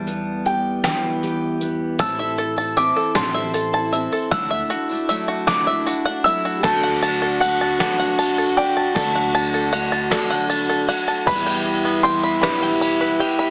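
In a slow, straight 6/8 at 52 BPM, this wistful, bittersweet indie folk excerpt builds from a woody upright piano melody over a full-bodied fingerpicked steel-string guitar and distant soft brush drums, then at 2.0 s the guitar gives way to a shimmering twelve-string, a twangy banjo in arpeggios, a growly pizzicato upright bass and a jingly background tambourine, before a vibrato-tinged solo French horn and a second, quieter piano join at 6.6 s as the chords move from Em through Am and Dadd9 to D and back to Em, all heard through a heavily compressed, small-speaker radio sound with light reverb.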